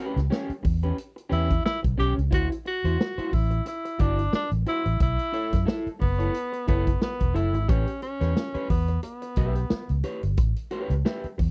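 Funky and playful, this short funk cut at 89 BPM swings its 16ths as a dark, slightly broken-up picked electric guitar through a small old amp comps over A9, D9 and B9sus4 chords, a round, foam-muted fingered electric bass and a swinging big-band drum kit of hi-hat, punchy kick and snare sit up front, and a warm tenor saxophone with light vibrato carries the jazz-style melody from 1.3 to 10.0 seconds in a dry, close 1970s-style studio sound.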